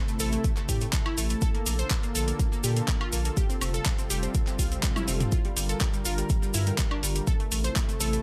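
A lush, detuned unison pad and a bright, round analog pluck with cassette-tape colour and digital delay open this expansive, bittersweet progressive house excerpt, both breathing with sidechain pumping over chords moving from Am through Bbmaj7, Fadd9 and Gm7. A tape-softened deep house kit of handclaps, hi-hat, toms and woodblock arrives with a grainy cabasa in the background, then a thick, saturated sine sub bass and an up-front, layered electronic kick drum that sits loudest in the mix. Around 4.5 seconds a very quiet swell appears, overlapping a drum fill, all in a dry, close sound.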